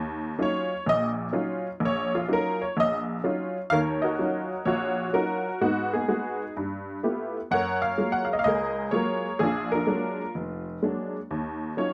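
A detuned, jangly vintage honky-tonk upright piano plays up front and alone through this short, smoky late-night solo jazz cut in Eb minor at 126 BPM with a swung 4/4 feel, spanning its low to high register over chords moving from Ebm9 through Abm7, G13, Gbmaj9 and Bb7b13 back to Ebm9 at 11.3 seconds, all set in a dark production with light reverb.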